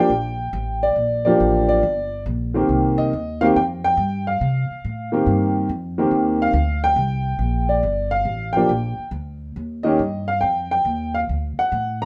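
Swinging eighths at 140 BPM in 4/4 drive this moody G minor jazz fragment of about 12.1 seconds. A smooth, vintage-toned upright piano sits up front carrying the melody with long sustain, while an acoustic upright bass, plucked pizzicato on steel strings with a woody, warm tone, holds the low end from 0.1 seconds. They move from Gm7 to Cm7, back to Gm7, then on to Eb and D in a moderate studio reverb.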